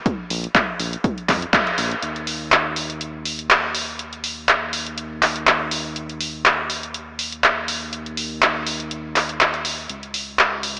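Overdriven, up-front deep house drums open this smooth, late-night excerpt at 122 BPM with a swung sixteenth feel, their handclaps and hi-hat riding over a punchy electronic kick that stops at 1.6 s, just after a full-band accent at 1.5 s, while a round, mellow analog bass blending sawtooth, sine and triangle tones enters at 0.3 s and sits between Bb1 and F2 with sidechain pumping, the mix carrying a long plate reverb and a small-speaker tint.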